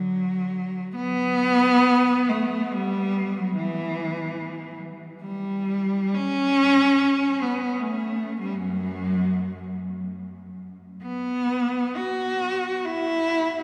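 A single bowed cello, rich and focused with a smooth top and expressive vibrato, sits up front in this yearning, meditative classical excerpt for unaccompanied cello, moving in a free, rubato 3/4 between 40 and 78 BPM across a range from F#2 to F#4, while a cathedral reverb with a 5.6-second decay surrounds it with the resonance of a church or concert hall.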